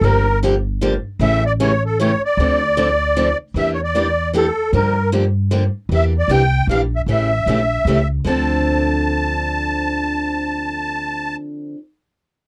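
A swung waltz at 153 BPM in 3/4 drives this swinging, bittersweet jazz manouche excerpt in D minor, where a reedy, shimmering musette accordion carries the melody over boxy picked steel-string acoustic guitar accompaniment and a woody, thumpy pizzicato upright bass, all three up front in a dry, close 1970s-style studio sound, with the harmony moving from Gm7 through Em7b5 and A7b9 before settling on Dm7 at 8.3 seconds.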